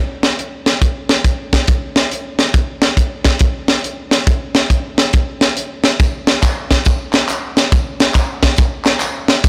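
A blown-out, overdriven recording with light reverb carries this soulful, hopeful gospel groove in swung 4/4, where an up-front, tight funk drum kit with a high-tuned snare, tight kick and hi-hat drives from the start, joined at 6.0 seconds by softer tambourine, maracas and group handclaps from a live room.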